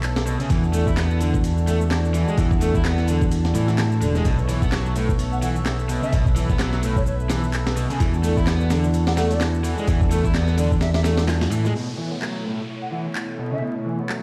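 A swung, energetic breakbeat groove at 128 BPM, built on a gritty, pitched-up sampler kit with a thumpy kick and a faint layer of house claps, shaker and ride, carries a bright, up-front picked bass and an overdriven garage guitar riff with filtering and delay, while a lush, detuned sawtooth pad pumps underneath with chorus and 12-bit grit, a mellow, hollow flute melody through a small-speaker tone drifts in the background from 5.3 seconds, and the breakbeat kit and bass drop out after a band accent at 11.3 seconds as a downlifter falls beneath vinyl crackle and stone-room reverb.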